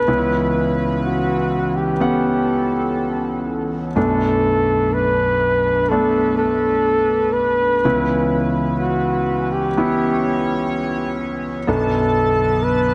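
A slow, straight 4/4 pulse at 62 BPM carries this melancholic, heartbroken pop ballad excerpt, tuned slightly flat to A4 = 435 Hz and cut from a longer piece. Up front, a mellow, breathy flugelhorn sings the jazz-style solo melody between F#4 and B4, with vibrato, scooped notes and a smooth top. A concert grand piano accompanies throughout, intimate and polished, with deep bass, long sustain and audible action noise. Beneath them, a chorused pulse-width pad holds shimmering, retro chords with a soft attack and a bright edge. The harmony rocks between C#m7b5 and Bm7 across the 12.9 seconds, set in light reverb and small room ambience, with a top end that stops at 10.5 kHz.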